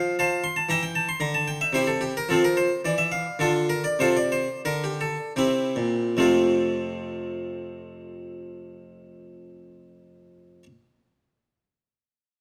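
A solo harpsichord opens the recording, its plucked, round tone coming from a single set of strings on a Flemish-style instrument placed up front. This is a short cut from a longer baroque-style suite movement in triple metre, with a dance-like yet serene character and a freely breathing rubato feel. From 1.5 to 6.2 seconds the pulse slows as the harmony moves through a gentle cadence, settling home at 6.2 seconds before a second section begins. The part covers a broad span from the low bass up to the high treble. Close, detailed microphones capture the instrument, while a moderate recital-hall reverb gives it a sense of space.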